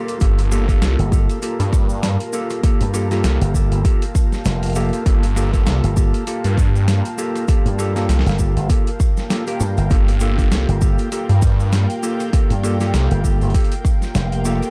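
Playful and swaggering, this glitch hop excerpt in G minor rolls at 99 BPM with a 16th-note swing, built on a Gm9 chord where a punchy, up-front electronic kick and a gritty, pitched-down boom bap kit of hi-hat, rim click and overdriven snare play alongside a swirling, saturated phased detuned saw bass and a bright slap bass with an envelope filter entering at 1.0 seconds, while a clean, fingered electric guitar plays delayed stabs, a grainy tube shaker adds percussion, and a moody analog pad and a breathy, airy pad with chorus and sidechain pumping hover in the background of a dark, warm, dry production.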